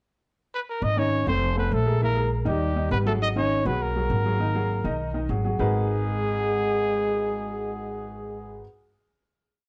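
A breathy, up-front trumpet with vibrato and plate reverb leads this sultry, fiery jazz piece from 0.5 s with a motif-based melody of call phrases, shadowed by a veiled, distant bucket-muted trombone with scooped notes and octave doubling. Beneath them, a woody, thumpy pizzicato upright bass plays a tumbao that anticipates the chords, and an intimate grand piano with audible action noise plays a montuno in octaves, until the quartet settles onto a final chord at 5.6 s in a dark, warm small room.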